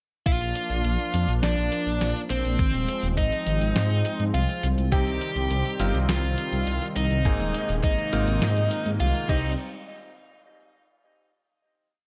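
A thumpy machine kick, a fat-snared 80s drum-machine backbeat with closed hi-hat and crash, a deep, rumbling sequenced sixteenth-note saw bass and a brassy, chorused analog pad, both pumping, open this driving, nocturnal synthwave piece, while a distorted, bluesy electric guitar plays a repeating riff melody doubled an octave higher by a very quiet, pure FM bell, and a brilliant baby grand piano joins at 4.9 s with held, syncopated chords before a final hit at 9.6 s.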